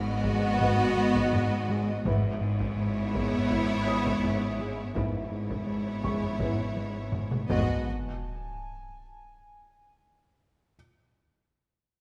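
Cinematic suspense film score with an uneasy, eerie mood, cut from a longer piece, in which a lush violin section carries the melody over a clear second violin line, distant violas, a focused cello section and a double bass section with soft-attack portamento, while a dark, gliding sawtooth synth bass riff, a mellow French horn section holding sustained chords in the background, a very quiet, boxy felt-muted upright piano with audible action noise, a high violin texture and hard-stick taiko drums sit in a wet scoring-stage reverb until a huge, bright sub drop enters at 7.5 seconds and a drum fill at 7.1 seconds leads into an impact at 7.8 seconds.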